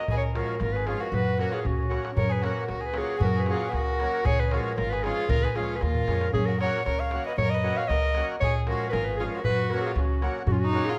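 Virtuosic and exuberant, this short cut of Balkan wedding-band folk at 116 BPM in 2/4 and F# major puts a present, classical-style clarinet up front on the melody, with a nasal, gut-string violin on the second line, a full, rich accordion accompaniment, a woody, thumpy pizzicato upright bass and a crisp metal-shell darbuka that fills at 1.7 and 5.9 seconds, the ensemble sitting in a moderate recital-hall reverb with a dark, warm production.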